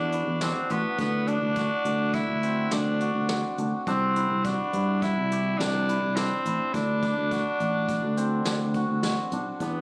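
A breathy, raspy tenor saxophone carries the melody up front over shimmering hammered dulcimer arpeggios and a growly, sustaining fretless electric bass from the opening moment, with a jazz brush kit and its boomy kick joining at 0.1 seconds in this brooding, intricate progressive instrumental in 5/4 at 104 BPM, moving through Esus2, D9, Cadd9 and D7 in a dry, phone-captured room sound cut from a longer piece.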